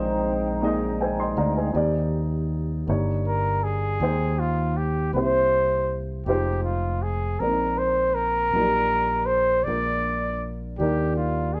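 Soulful and hopeful, this slow gospel excerpt moves in a straight 6/8 at 53 beats per minute in E-flat major, cut from a longer piece. It opens with a percussive tonewheel organ holding fat, clean sustained chords with key click, chorus vibrato and a slowly turning rotary speaker, taking a brief solo until it stops at 1.7 seconds while a dark baby grand piano adds a short fill. From the very start, the boxy, short-sustained piano carries the accompaniment throughout alongside a punchy, up-front fingered electric bass with a direct, amped tone. At 3.3 seconds a mellow trumpet takes the melody in a classical style, its smooth top and light vibrato sitting forward in the mix. The harmony moves from a Bb9sus4 through rich seventh chords such as Ebmaj7, Abmaj7/Eb, C7 and Fm7 before settling back on Ebmaj7. The band sounds as if playing live together in one room, wrapped in moderate studio reverb.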